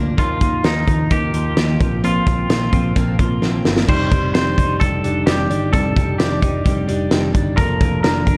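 This jangly indie pop excerpt moves with a youthful, breezy lift in a straight 4/4 feel. A fingerpicked plugged-in steel-string acoustic guitar with fresh strings and a full-bodied jumbo tone opens the accompaniment, joined from the start by a bright, clean twelve-string electric guitar playing arpeggios in the background, its sound thickened by a lush chorus. A round, dark picked electric bass holds the low end. At 0.2 seconds a twangy electric guitar takes the melody, clean and compressed under spring reverb. A loose indie drum kit enters at the same moment, sitting up front with a punchy kick, fat snare, dark cymbals and a pumping room sound, and it plays a fill from 3.4 to 3.9 seconds that leads into a new section over added-ninth and major-seventh chords. The whole piece carries light reverb, a small room ambience and the soft grain of cassette tape.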